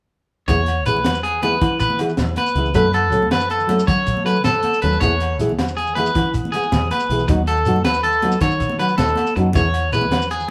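A twangy, slightly broken-up electric guitar sits up front with bright picked arpeggios bathed in spring reverb, over a thumb-plucked nylon-string guitar with audible finger squeak and a round, foam-muted fingered bass in this danceable highlife guitar band excerpt at 106 BPM in a straight 12/8, moving through E, F#m and B/D# in E major. A gritty, saturated breakbeat kit with a punchy kick, high-tuned snare and dark, rolled-off top drives the groove, while ringing agogo bells, grainy shekere and bright, damped congas played with hard hands sit in the background. The band sounds like it is playing live together in one room, wrapped in a wet studio reverb, with every part entering at about 0.5 s; the nylon-string guitar drops out around 10.1 s, the agogo bells, shekere and drums stop shortly after, and the electric guitar, bass and congas carry on to the cut at 10.5 s.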